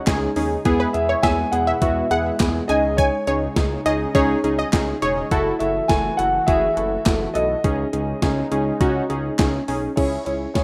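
A straight 4/4 pulse from a gated 80s digital drum machine drives this cool, driving synth-pop excerpt, its thumpy kick, snare, handclaps, hi-hat and crash overdriven and up front, with a gated reverb snare. Round, detuned analog keys with chorus and a filter sweep open with a short fill over a very quiet, slow-attack pad and a smooth sawtooth synth bass touched by ring modulation, while a deep-toned concert grand piano carries the melody with delay from 0.9 seconds. A bright, evolving analog pluck with a noise layer, chorus and delay adds a second line from 0.8 to 5.1 seconds, and light reverb and digital ambience give the rough home demo mix its space.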